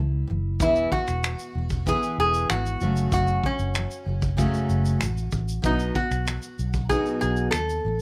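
A straight, easy-going 4/4 groove from a vintage brush kit with finger snaps, a punchy kick and shaker, entering at 0.6 seconds, carries this carefree acoustic pop excerpt, where a round, foam-muted fingered electric bass sits up front beneath a full-bodied jumbo steel-string acoustic guitar picking the chords, while a metallic, nasal resonator slide guitar played with fingerpicks carries the melody, in a close, detailed recording with light reverb.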